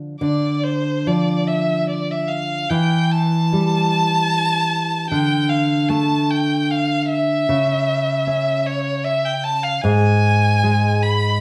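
A romantic duo for violin and classical guitar in D minor, this melancholic, elegiac excerpt moves at 75 BPM in 3/4 with a rubato feel. A fingerpicked nylon-string guitar opens at 0.0 seconds with deep, warm classical accompaniment, and a single bowed violin enters at 0.2 seconds, carrying a rich, focused melody with vibrato that spans C5 to B5. Both players sit up front, performing live in one room with a wet large-studio reverb, over chords that move from Dm to A5/E and D5 before the harmony falls away at 7.5 seconds.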